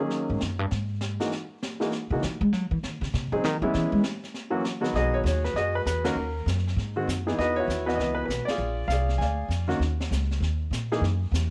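Jazz piano trio excerpt at a brisk 198 BPM in relaxed, swinging 4/4, with a woody, thumpy pizzicato upright bass featured in a solo over the first 4.9 seconds, a clear, polished grand piano carrying the melody up front, and a brushed drum kit with dark cymbals and a high-tuned snare in a small room with light reverb, as the band hits accents at 6.0 and 8.4 seconds over chords such as D#m7, C#m11 and A#7.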